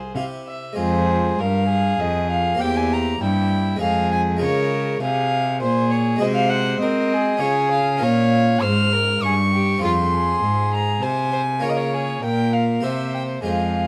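A rich, up-front gut-string cello anchors this grave, introspective fragment of a baroque-style sonata movement in triple metre, where a nasal, reedy period violin carries the melody above a second violin with light vibrato and an airy, round single-strung harpsichord filling out the continuo, captured with close, detailed microphones and light reverb.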